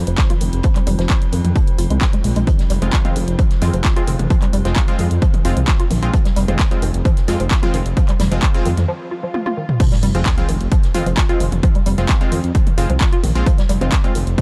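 Dark, dry production frames this hypnotic, relentless slice of driving peak-time techno, where an overdriven, up-front electronic kick and a punchy analog drum machine with crash, handclaps, hi-hat and toms sit over a very quiet soft-mallet drum kit; a deep, rumbling detuned saw bass pumps beneath a woody wave-folded pluck riff with chorus and dub echo; an eerie, metallic drone warbles until 8.9 seconds; airy supersaw stabs arrive at 2.8 seconds; and a swell and sub drop carry the track into the drop at 9.8 seconds.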